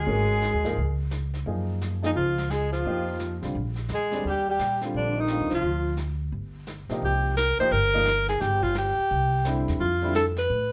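Relaxed and sophisticated, this short excerpt of small-group swing and bop moves at 173 BPM in Eb major, with a clear alto saxophone with light vibrato and scooped notes carrying the melody over an up-front woody pizzicato upright bass, an intimate grand piano with audible action noise, and a vintage brush kit with a punchy kick and rolled-off top, while a breathy, soft-attacked second alto adds a low line until 5.9 seconds, all set in a moderate club reverb.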